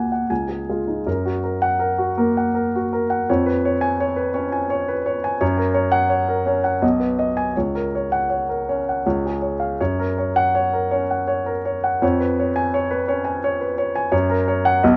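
Moving in a rubato 3/4 at roughly 78 to 87 BPM, this romantic classical character piece for solo piano unfolds in F# major with a passionate, hopeful mood, tuned slightly above standard pitch at A4 = 441 Hz. The grand piano sounds polished and up front, ranging from B1 to G#5, its harmony circling between F# and C# with the dominant seventh and a brief G# minor colour. Light reverb and a softened top end give the excerpt a warm finish, and after a short opening gesture the main passage takes over at 1.1 seconds and carries on to the cut at 15.0 seconds.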